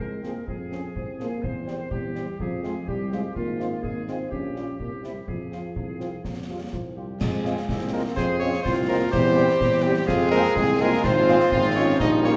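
A stern, resolute military-style march for wind band in F minor opens at once with a clear woodwind section and an euphonium carrying second lines over a warm tuba bass, all touched with vibrato. Within a moment a dark, close-miked cornet takes the melody in a classical style, while a mellow French horn section sits distant in the background with accompaniment, and concert snare drum, bass drum and clash cymbals mark a straight 2/4 at 125 BPM. The cornet sits most forward in the blend, and the euphonium's smooth top and light vibrato on cornet, woodwinds and tuba give the lines a sung quality. At 7.2 seconds the same opening strain returns, and a tight, very quiet trombone section joins from afar with sustained chords. The harmony circles around F minor, passing through C/E and a brief C7 before settling back. A wet recital hall reverb, as in a church or concert hall, lends the band a roomy sheen in this short cut from a longer piece.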